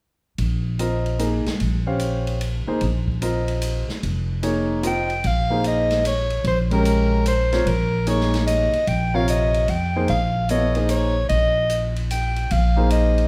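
Modal jazz in a swung 3/4 at 148 BPM, this searching, intense passage is cut from a longer piece and sits on a Bbm11 chord in Bb dorian. A woody, pizzicato upright bass with steel strings opens at 0.4 seconds alongside an open acoustic drum kit, whose dark cymbals, medium-tuned snare, boomy kick, hi-hat and ride sit further down in the balance. A warm baby grand piano joins as accompaniment at 0.8 seconds, natural in tone and held up front with the bass. At 4.9 seconds a breathy soprano saxophone takes the melody as a soloist, its clear, whispered tone marked by light vibrato, soft attacks and scooped notes that feel intimate and close. A large studio reverb gives the ensemble a roomy quality, as if heard from further back in the space.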